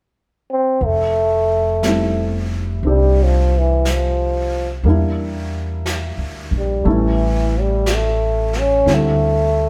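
A cup-muted trombone opens this intimate, late-night jazz ballad at 0.5 seconds, its soft, veiled tone carrying the melody up front over a slow 60 BPM swing in F major. Upright bass and a brushed drum kit join at 0.8 seconds, the pizzicato bass sounding woody and close while the brushes on snare and hi-hat sit low and natural in the mix. A warm baby grand piano enters at 1.8 seconds with intimate accompaniment, its short sustain and audible action noise giving it a natural character. The harmony moves from Fmaj9 through Em7b5 and A7 before settling on D9sus4, and the muted horn keeps a vintage flavor throughout. The players sound as though gathered live in one stone room, with a moderate reverb lending a soft halo to this brief fragment of a longer piece.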